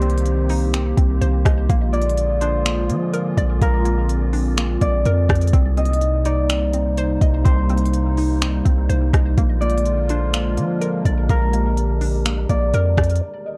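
A deep, mellow 808-style bass with a sine tone sits up front in this hazy, ethereal cloud-rap excerpt, its long notes hitting with a fast attack and decaying under a half-time feel at 125 BPM in 4/4. Beside it, a smooth, produced R&B drum kit, also up front, mixes a soft kick, smooth hi-hats, finger snaps and rim clicks. A thumb-plucked Celtic harp rings out the melody through a low-pass filter and tape echo, while a moody analog pad of detuned saw, square and triangle waves with ring modulation holds slow-attack chords, pumping against the beat under chorus. A hollow, bouncy square pluck adds warbling, vintage arpeggios, and an airy, breathy wind-like tuned noise texture drifts in the background with its own reverb. A very quiet electronic downlifter sounds until 1.7 s, the harmony moves between Cm7 and Bb7, and the dry, gritty cassette sound holds until the rhythm parts stop at 13.2 s.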